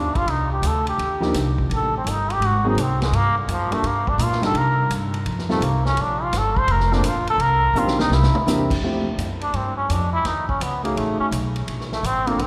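A muted trombone carries the melody from the opening beat, its nasal, brilliant tone touched with light vibrato, over a woody pizzicato upright bass. Together they set a joyful, energetic big band swing groove at 168 BPM. A vintage drum kit with dark cymbals and a punchy kick sits further back, adding a fill at 7.8 seconds, while a mellow, intimate grand piano enters at 1.2 seconds with smooth chords and audible action noise. The whole excerpt blooms in a long, wet church reverb that lends the lively playing a spacious, hall-like glow.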